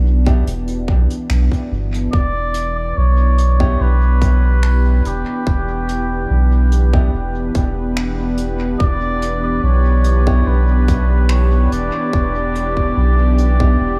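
Bathed in light reverb and small-room ambience, this hazy, spacious ambient dub passage at 72 BPM in E dorian rests on a smooth, detuned analog pad with chorus and a deep, round sub bass held up front, while a woody upright piano with audible action noise adds echoing stabs in the background, an overdriven, tight electronic kick and a faint brushed kit with finger snaps and hi-hat carry the beat, and from 2.1 seconds a mellow, veiled cup-muted trumpet sings a distant solo melody trailed by dub echo.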